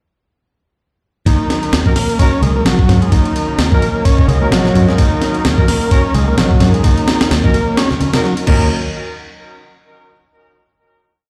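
A looped, edited breakbeat at 129 BPM drives this short, gritty breakbeat piece in Eb minor, its swung sixteenths giving the groove a swaggering lilt. The compressed, tape-warm drum kit sits up front with a thumpy kick, medium-tuned snare, hi-hat, ride and crash, joined at 2.4 seconds by a very quiet, low-tuned conga loop played with soft hands. A growly, bright picked electric bass runs a funky syncopated line under a buzzy, overdriven combo organ that repeats a 16-step sequence with heavy vibrato, filtered dark and trailed by digital delay. Behind them a swirling, detuned sawtooth pad holds an Ebm7 chord, phased and chorused with lo-fi sampler grit and pumping against the kick. From 1.9 seconds a distant, roomy brass section adds sparse echoing stabs, one chord shape moved in parallel, before the groove gives way to a final hit at 8.7 seconds that rings out in the stony reverb of a bare room on a big sound system.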